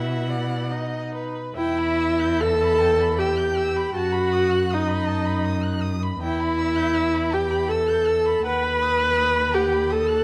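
Yearning and melancholic, this slow romantic movement for string quartet moves in a rubato 3/4 between 66 and 84 BPM in E minor. It is cut from a longer piece and opens on a suspended B chord that settles before turning to E minor at 1.6 seconds. The viola carries the accompaniment up front with smooth, even vibrato, and the cello's expressive bass glides with soft attacks and portamento. Two distant violins complete the quartet: one sings the melody in the background with vibrato and portamento, while the other traces a smooth second line that reaches higher, all within the gentle bloom of a scoring-stage reverb.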